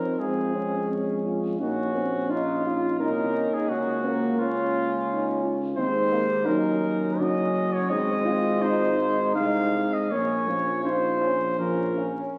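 Heard through the crackle of a very old 78 rpm record and the lush reverb of a scoring stage, this serene, tender brass-band hymn unfolds in a flexible, rubato 3/4 as a fragment of a longer piece. A close-miked, warm cornet carries the melody up front, while a mellow, distant French horn section with light vibrato sings a second line. Beneath them, a dark euphonium and a soft-edged, smooth euphonium set in the background fill out the accompaniment over a punchy, dark tuba bass, all sounding together from the very start of the excerpt.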